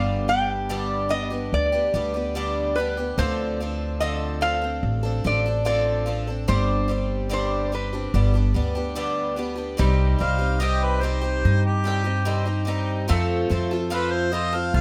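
Acoustic folk for a duo or small band, intimate and wistful, moving at an unhurried 73 BPM in straight 4/4 in C harmonic minor, cut from a longer piece. A lap resonator guitar carries the melody with a metallic, nasal slide tone and a slapback echo until 8.9 seconds, over a shimmering, octave-doubled twelve-string guitar and a thumpy, woody upright bass, while the chords move from G through Dm7 and Gsus4 back to G. At 9.8 seconds the harmony turns to Cm and then F as a mandolin adds bright double-string arpeggios and, from 10.2 seconds, a harmonica with light vibrato takes a classical-style solo, all under light reverb and close, detailed microphones.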